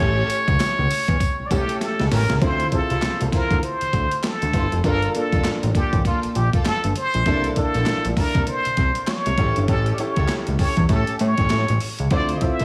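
Punchy and slick, this excerpt of new jack swing R&B moves at 99 BPM in 4/4 with a swung sixteenth-note feel, sitting in D minor. A fat, thick analog bass with a sawtooth bite and a filter pluck sits up front from the start, while a brilliant, plunger-muted trumpet carries the melody between F4 and E5 in a jazzy, wah-wah voice trailed by digital delay. Behind them, a concert grand piano with deep low end keeps up accompaniment in the background, and a lush, bowed string ensemble adds distant stabs with vibrato, also touched by digital delay. The sampler-style drum kit enters at 0.3 seconds, gritty and pitched down, with a thumpy kick, high-tuned snare, handclaps, hi-hat and tambourine under gated reverb, and a drum fill at 1.8 seconds leads into the next section at 2.4 seconds. The harmony moves from A7 through Dm9, Gm9 and C13 before returning to A7 and Dm9, all set in a small room ambience.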